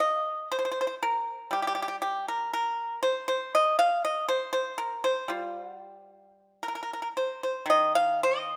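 Unfolding in a free, rubato 2/4 at around 55-60 BPM, this brief passage of Chinese traditional music, cut from a longer piece, sits in the G jue mode with an elegant, longing mood. A solo pipa, played with fingerpicks, carries everything from 0.0 to 8.6 seconds across a range from Eb3 to F5. Its acoustic tone is dry and percussive and placed up front, set in a light reverb.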